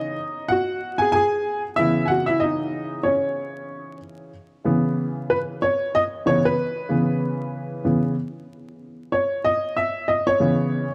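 Swung sixteenths in an easy 4/4 give this short hip hop fragment a loose, unhurried lilt. A lone upright piano carries it from start to finish, its tone mellow, woody and a little boxy, slightly out of tune and worn, with the soft clatter of its action clearly audible. The instrument sits up front and intimate, wrapped in a moderate plate reverb whose long tail lets each chord hang in the air. At 4.3 seconds the harmony shifts from a lush extended minor chord to a plainer minor seventh as the passage moves into its second part. Vinyl crackle and a dark, warm production finish the smoky, nocturnal mood.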